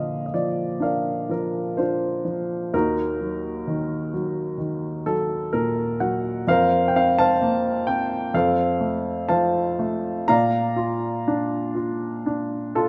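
A rubato pulse in 4/4 drifts between 58 and 65 BPM, giving this short classical passage for solo piano a lyrical, unhurried breath in B-flat major. The mood is peaceful and warm, carried entirely by a single upright piano whose woody, polished tone sits up front with long sustain, ranging from the low Eb2 up to Bb5. The harmony moves from B-flat to a darker E-flat minor at 2.7 seconds, settles on a suspended F that resolves to F, and returns home to B-flat at 10.3 seconds. A brief piano fill closes the phrase at 12.2 seconds. A moderate concert hall reverb surrounds the instrument, lending it a graceful sense of space, and the passage is clearly cut from a longer piece.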